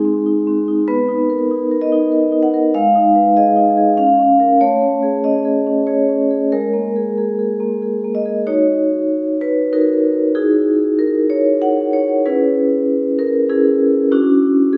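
A contemporary classical piece for solo vibraphone, this short cut from a longer work has a hypnotic, flowing mood, moving at 96 BPM in 3/4 with a free, rubato feel. The vibraphone, struck with medium hard mallets, plays alone throughout, spanning G#3 to F#5 with a metallic, ringing tone shaped by a medium motor vibrato. Its sound is vintage and band-limited, yet it sits up front, wrapped in a wet, hall-like reverb that lets each note bloom into the space. The harmony drifts through lush colors such as Bmaj7, G#m6 and Amaj7 before settling on G#sus2. At 8.5 seconds a second passage begins, turning to darker shades with D#m7 and C#m7 and closing on Esus2/C#.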